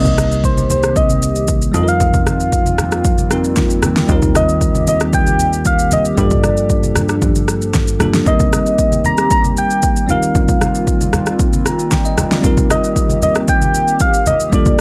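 A dry amapiano excerpt at 115 BPM sets a deep, hypnotic mood with a punchy, overdriven deep house kit of kick, snare, rim click and shaker up front, low-tuned congas in the background, a plucky, funky analog bass that drops out at 8.2 s, a bell-like tine electric piano that adds a fill at 11.4 s, a hollow, airy pad pumping with sidechain and chorus beneath chords such as Cm7, Gm9 and Eb6, and a round, gentle FM synth lead carrying the melody through chorus and tape echo.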